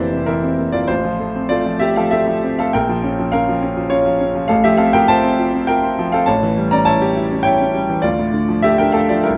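A romantic classical character piece for solo piano, this short excerpt unfolds in F major at 101 BPM in 3/4, shaped with a flexible rubato feel that gives it a warm, hopeful glow. The concert grand carries everything alone from 0.0 to 9.4 seconds, ranging from a deep bass down at F1 up to Bb5, its tone clear, smooth and slightly vintage in character. Close, detailed microphones place the instrument up front, while a moderate recital hall reverb of 1.4 seconds adds a gentle sense of space around it. The harmony moves from C7 over F through F over A, then darkens briefly with a B-flat minor chord before returning to F over A, leaning into A7 and settling on D minor. Cut from a longer piece, the passage feels like a single heartfelt phrase suspended mid-thought.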